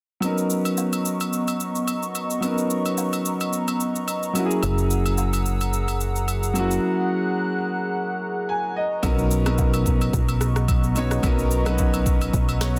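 A dense, heavily limited mix with light reverb carries this soulful amapiano excerpt at 109 BPM in B major, where an up-front concert grand piano with a boxy, deep low end accompanies over Bmaj9 and F#9 chords and adds a fill at 8.2 seconds, a hollow, flute-like pad holds sustained chords with chorus and sidechain pumping, an electronic afro-pop kit pairs a deep kick with a sharp, soft-clipped snare, rim click and shaker, dry acoustic agogo bells and woodblock sit low in the mix, and a punchy, wave-folded analog bass enters at 4.6 seconds.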